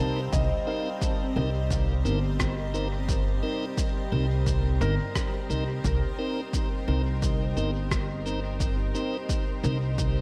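A straight 4/4 pulse is set by a punchy, overdriven electronic kick and a muffled, pitched-down cabasa and rim click carrying dub echo, both arriving at 0.3 s. This deep, hazy piece of ambient dub is cut from a longer work and rests on a single Cm7 chord throughout. A woody pizzicato upright bass sits up front. A piping tonewheel organ with key click and a stopped rotary speaker plays echoing stabs until 9.8 s, while a soft felt-muted upright piano, with audible action noise, traces arpeggios through dub echo in the background. A cloudy, detuned granular pad holds bright sustained chords in its own reverb, and a glassy texture of drifting overtones, treated with chorus, floats behind from 0.2 s, all set in a light digital ambience.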